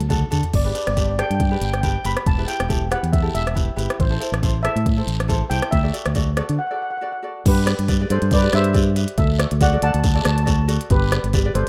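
Bouncy and sunny, this calypso excerpt moves at 139 BPM in 4/4 in G major, with a light swing on the sixteenths. A minimal click drum kit opens with a fill at 0.0 seconds, its soft kick, clicky hats, rim clicks, toms and crash carrying a produced, tape-warm character as if re-recorded in a large room, while a fingered electric bass sits up front with a bright, growly, direct and amped tone. A fingerpicked ukulele adds light acoustic accompaniment beneath, and a raspy guiro scrapes along further back with a live-room feel. The lead steel pan enters at 0.6 seconds, shimmering and airy with a metallic ring from medium rubber sticks, carrying the melody over chords that move from G through Em, Am and Dadd9. After a break at 6.6 seconds, a second section begins at 7.5 seconds, alternating G and Dadd9, all captured in a dry, rough home-demo mix with little reverb.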